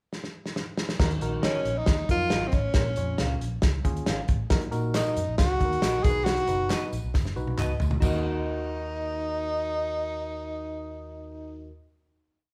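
Driving and urgent, this short uptempo 1960s-style soul piece opens on a drum fill before a tight, up-front soul kit with dark cymbals drives the snare on all four beats, a round, foam-muted electric bass weaves a syncopated line with chromatic approach notes, a barky, lightly overdriven electric piano pushes close-voiced chords with grace notes, a clear tenor saxophone with light vibrato states call-like motifs up front, a twangy, slightly broken-up guitar chops the backbeat in the background, and tambourine and handclaps join from 4.7 to 8.2 seconds, all in a live-room sound with moderate large studio reverb, ending on a held final chord from 8.0 seconds.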